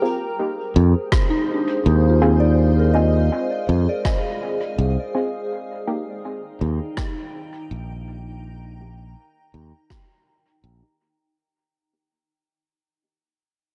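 Spacious and deep, this short ambient dub passage, cut from a longer piece, drifts over a gently swung groove in 4/4, moving from F minor to E flat and fading out across its whole length. A granular cloud pad holds blurred, slowly evolving chords in its own reverb, while a soft synth bell spins pure FM arpeggios through chorus, phaser and dub echo until 7.2 seconds. A filtered dub chord stab adds muted, detuned sawtooth hits with a quick pluck, treated with chorus and echo as a filter sweep runs across it throughout. From 0.8 seconds a bright, punchy fingered electric bass sits up front, joined at 1.1 seconds by a layered electronic kick and a natural, hall-toned rim click that trails dub echo. The mix is echo-heavy with light reverb, placing the bass and kick firmly forward beneath the hazy upper layers.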